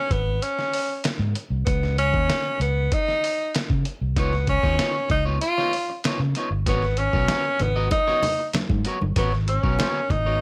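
Funk at 96 BPM in G# dorian with a driving, cool mood, this cut from a longer piece opens on a break where a clear jazz-style tenor saxophone with light vibrato and slapback echo leads over a dark, round fingered electric bass and a muffled, pitched-down sampler-style drum kit with a thumpy kick and fat snare. A slightly broken-up, picked electric guitar joins at 4.2 seconds, and bright, compressed congas sit in the background from 6.7 seconds as the harmony moves from G#sus4 through C#9 to G#m11. Light reverb gives the sound a gentle sense of space.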